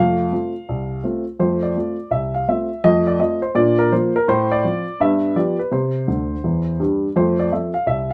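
Playful and swinging, this short stride piano passage, cut from a longer piece, has a lively, buoyant swing feel in 4/4. A solo upright piano carries everything, its woody, warm tone sitting up front and ranging from deep bass notes to bright upper melody. The harmony moves from F through Bb and a G7 before settling on C and returning home to F at 7.2 seconds. A brief piano fill between 6.1 and 7.2 seconds adds a flourish near the close. The performance has the feel of live playing in a single room, with a moderate studio reverb giving it a natural sense of space.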